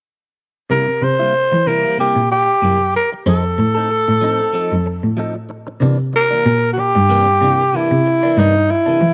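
At 0.7 s a growling tenor saxophone, a cello and a clean electric guitar enter together on a C7 chord, opening this rollicking, soulful blues cut from a longer piece. The saxophone carries the melody up front in a breathy, raspy subtone, with scooped notes, vibrato and a jazz player's phrasing. Beneath it a single bowed cello plays the bass line sul tasto, dark and intimate with a soft attack, sitting close in the mix. The guitar is recorded direct and compressed, and its picked stabs pass through a phaser at a lower level than the other two parts. The harmony moves to F7 and then to C9 as a new section begins at 5.8 s, all with a gentle swing and light studio reverb, until the passage ends at 9.1 s.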